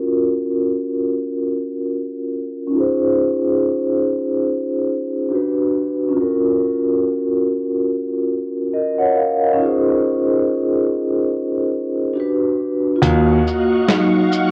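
This nostalgic, melancholic lo-fi hip hop excerpt opens on a soft-mallet vibraphone, metallic and ringing with a slow motor vibrato, played up front through cassette tape and a filter sweep over lush jazz chords such as Gbmaj7/Db and Dbmaj9. At 13.0 seconds the vibraphone takes a solo as a lush sawtooth string machine with ensemble chorus holds sustained chords, a dark, smooth grand piano sounds a brief bass note on Eb2, and a muffled, compressed sampler-style kit brings hi-hat, shaker and snare with the kick muted. Moderate spring reverb and a cassette home-recording character give the whole a vintage feel.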